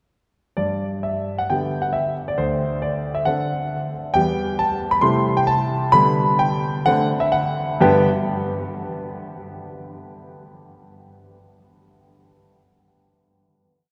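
A playful, elegant classical-period piano sonatina in G major at 133 BPM, where a clear, up-front concert grand plays a single-line melody over bass and chords on the beats with flexible, rubato timing, its deep bass and natural tone bathed in a long cathedral reverb as the short piece moves through a brief section before settling on a final G chord at 7.8 seconds.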